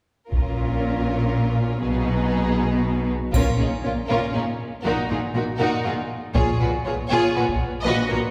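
Heard from further back in a wet concert hall, this dark, relentless stretch of epic orchestral film score is cut from a longer piece and moves in a straight 6/8. The strings enter together at 0.3 seconds, with violins carrying a focused, vibrato-rich melody over a second violin line, while lush violas fill the middle with a smooth, even accompaniment. Beneath them, the cellos sit up front and the double basses add expressive depth, the two sections sharing the bass. A taiko ensemble played with heavy sticks rumbles through a live room under the bowed sections. From 3.3 seconds the music builds, and a close, dry, dark-toned triangle sounds briefly as the strings press on to about 8.2 seconds.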